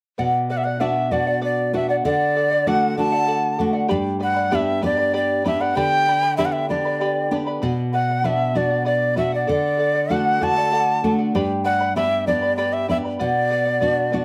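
Festive and earthy, this Andean folk excerpt in B minor moves at 64 BPM in a straight 6/8, with a breathy, reedy large quena carrying the melody up front from 0.5 seconds over a fingerpicked, full-bodied nylon-string guitar and a shimmering double-strung charango cycling through B minor, D and G in moderate studio reverb.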